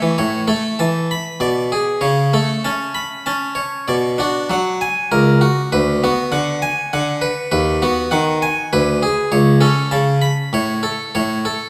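Set in a reverberant recital hall, a close, up-front French-style harpsichord with a round, full, plucked tone on a single set of strings plays alone in a serene 3/4 baroque-style suite movement, its rubato phrasing lending a gentle dance-like sway to this short fragment cut from a longer piece.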